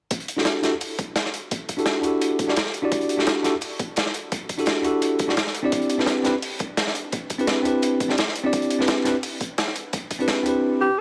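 Melancholic and dreamy, this liquid drum and bass excerpt at 171 BPM in E minor sets an up-front, bell-like tine electric piano, carrying vintage sampler grit, delay and a filter sweep, over Em11 and Cmaj9 chords, driven by a crunchy, saturated breakbeat kit with a medium-tuned snare, a thumpy, pitched-up electronic kick and a compressed electronic hi-hat tucked in the background, before a breathy, subtone alto saxophone with vibrato enters at 10.8 s, all set in light studio reverb.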